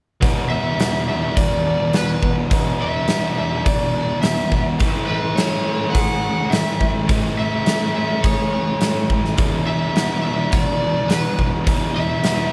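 A moderate studio reverb and the pumping room of a huge arena drum kit, its punchy kick up front, frame this blissful, hazy shoegaze and dream pop rock excerpt, where a biting overdriven guitar riff with reverse reverb sits forward over a dark fuzz guitar riff soaked in lush chorus, bright, twangy clean arpeggios with analog chorus and tape echo glimmer in the background, and from 0.5 s a lead guitar through a small cranked amp carries an overdriven melody with tape echo as the chords move from E5 to Amaj7 and back.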